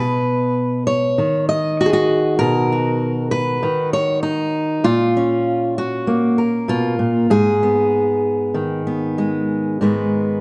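Folk for solo fingerstyle acoustic guitar, haunting and melancholic, cut from a longer piece and running just over ten seconds in a straight 4/4. A dark, fingerpicked steel-string guitar sits up front, its auditorium-like body and audible finger squeak carrying the chords from B through A#m at 4.8 seconds to G#m at 7.3 seconds. A moderate large-studio reverb surrounds it, and the top end is rolled off, giving the sound a muted, shadowed quality.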